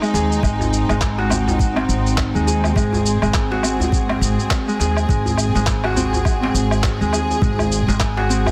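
An up-front, woody pizzicato upright bass on steel strings anchors this hypnotic, earthy organic downtempo cut at 103 BPM in 4/4 with a swung sixteenth feel, holding on a G# chord while a ringing, fingerpicked Celtic harp spins arpeggios through tape echo. A dark, intimate string section bowed sul tasto with light vibrato and soft attack sustains chords beneath, and both bass and strings pump against the soft, tape-warm electronic kick drum, which enters at 0.4 s and stops at 8.1 s. Gritty, sampler-style woodblock, shaker and handclaps ride along with a vintage, band-limited djembe with metal rattles sitting in the background, all set in light studio reverb with a dense, heavily limited modern master in this excerpt from a longer piece.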